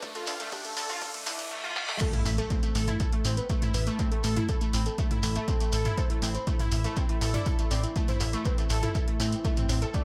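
A punchy, dry electronic kick sits up front in this hypnotic, dramatic melodic techno excerpt, cut from a longer piece, with a plucky, funky analog bass entering at 0.3 seconds and carrying the low end through sidechain pumping. Over them, a bright, detuned unison pluck spins arpeggios through lush chorus and delay, while a soft octave-layered synth lead, round and dark with vibrato, carries the melody through chorus and tape echo. A punchy analog drum machine supplies crash cymbal, hi-hat, snare drum and toms in a small room ambience, joined by a grainy, mellow shekere, and a warbly, nostalgic lo-fi pad drifts in the background with its built-in reverb. The opening build-up over a D minor chord brings a riser and reverse cymbal that lead to a drum fill at 1.8 seconds. The drop lands at 2.0 seconds on A minor with an electronic impact, and the groove rolls on from there under a light reverb.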